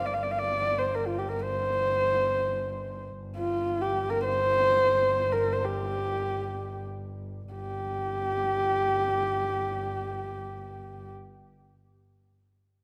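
The recording sits in a moderate concert hall reverb, with the horsehead fiddle close and up front against the hall's 2.4-second decay. This is Mongolian traditional folk music in free time, built on a G yu mode, with a solemn, vast mood, and it is cut from a longer piece. A single bowed horsehead fiddle carries the melody between F4 and F5, its husky, nasal tone shaped by vibrato, portamento and an airy bow with a soft attack. Beneath it, one bowed double bass holds a smooth, even drone on G1 with vibrato, sitting well below the fiddle in level. Both instruments play from the start to 11.1 s, and the music slows from 3.2 s until a new section begins at 7.5 s.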